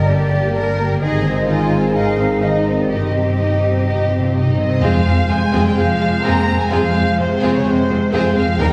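A lush violin section carries the melody with focused, vibrato-laden bowing and a smooth top, setting a swashbuckling, adventurous tone in this heroic adventure film cue, heard as a short cut from a longer piece in straight 4/4. An airy flute section with a crisp attack sits close alongside it on a second line. A further violin section plays its own line from the background, while a rich, intense viola section fills in the accompaniment. Beneath them, a mellow, roomy French horn section holds soft-edged sustained chords, a ringing fingerpicked harp spills arpeggios, and bowed cellos and chamber double basses anchor the bass with an even, smooth tone. Timpani with medium mallets enter at 2.9 s for a close, dry fill. At 4.8 s a clear solo oboe and a vintage-toned clarinet join with second lines as the harmony settles onto F minor, all set back in a reverberant recital hall.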